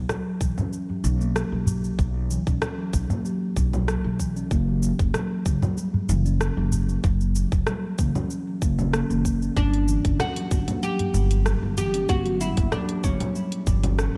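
A steel tongue drum opens this organic downtempo cut with round, ringing arpeggios struck with firm rubber mallets, its airy tone softened by a low-pass filter and analog delay. Alongside it, a pizzicato upright bass on gut strings sits up front with a dark, thumpy, tube-saturated sound. A layered, overdriven deep house kit of cabasa, congas, hi-hat and rim click joins almost at once, under a tight, tape-warm electronic kick that stays prominent, while a small, band-limited udu adds vintage acoustic colour. The harmony rests on B5, drops away at 4.5 seconds, then settles on G5 at 9.6 seconds, when a bright, plectrum-plucked fretless oud with double strings enters up front, carrying a woody melody through analog delay. A moderate plate reverb soaks the straight 4/4 groove in a dreamy haze, giving the piece a warm, hypnotic pull.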